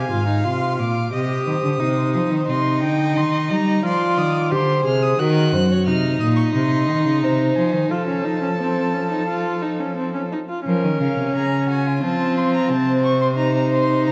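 Contemplative and serious, this fragment of a baroque-style fugue for string quartet moves in a straight 4/4. The first violin carries the melody high above the ensemble, its rich, vibrato-laden tone gliding between notes with expressive portamento while sounding somewhat distant. Beneath it, the second violin draws a smooth, even line. Sitting close and up front, the viola supplies a clear, focused accompaniment, and the bowed cello anchors the bass with an intense sound whose upper register stays silky. All four players sound throughout, set in a moderate concert hall reverb within a dark production, and a new section begins around 10.7 seconds before the harmony falls away near 13.4 seconds as the passage breaks off.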